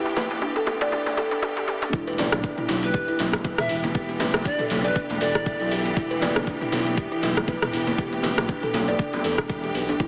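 Squeezed through a heavily compressed, small-speaker radio sound washed in lush hall reverb, this earthy afro house excerpt opens with clear, sidechain-pumped bowed strings, a gritty, woody kalimba with tape echo, overdriven deep house drums with metallic hats, ringing distant congas and a cracking djembe in a short build-up, before a deep overdriven kick, a smooth, pumping sawtooth synth bass and a grainy egg shaker arrive at the drop at 1.9 seconds, with an airy, chiffy pan flute carrying a brief tape-echoed melody from 2.8 to 5.7 seconds.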